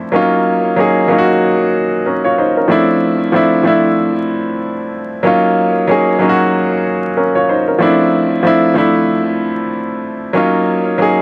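Hip hop at 94 BPM in 4/4, with a swung sixteenth-note feel that gives this short excerpt a tough, gritty mood. A grand piano plays solo throughout the 11.2 seconds, ranging from F3 up to Db5, its tone present, polished and placed up front. The piano passes through high-pass and low-pass filters and a digital delay. Its chords alternate between Ebm7 and Dm7, returning to Ebm7 at 10.4 seconds. Studio reverb and a layer of vinyl crackle color the recording.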